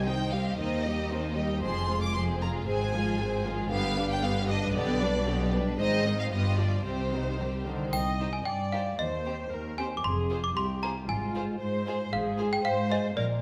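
A woody, sharp xylophone played with plastic mallets sits up front and joins the melody at 7.9 s, along with a brief, close and dry triangle chime in the background that ends by 8.9 s. Underneath, a lush bowed string orchestra carries this playful, whimsical film cue in a brisk two-beat metre: expressive violins sing the lead while a smooth second violin line and even-toned violas fill the middle, and a warm chamber cello section with soft attacks and portamento slides joins a close, full-bodied double bass section on the bass. The wet recital-hall reverb lends the whole fragment a magical, storybook glow as the minor-key harmony cycles through two matching passages.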